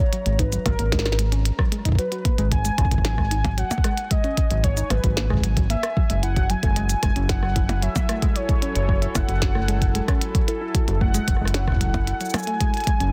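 IDM cut from a longer piece, intricate and cerebral, moving at 113 BPM in a straight 4/4 in G# phrygian, with the chords shifting from G#m9 to F#m9 at 6.2 seconds. A velvety, full-bodied synth lead carries the melody between A4 and G#5, its detuned unison tone smoothed by chorus, vibrato and a dub echo. Beneath it, a nostalgic, tape-like pad sustains dark chords in the background with slow attack, built-in reverb and sidechain pumping, while a dusty, wave-folded pluck spins lo-fi arpeggios through chorus, 12-bit sampler grit and tape echo. A glitchy kit of tiny snare, clicky hats, cabasa, rim click and percussion blips enters at 0.1 seconds, joined by a round analog bass sitting up front on F#1 to G#1 from 0.3 seconds and a deep electronic kick from 0.4 seconds. The room is dry, and the master is dense and heavily limited.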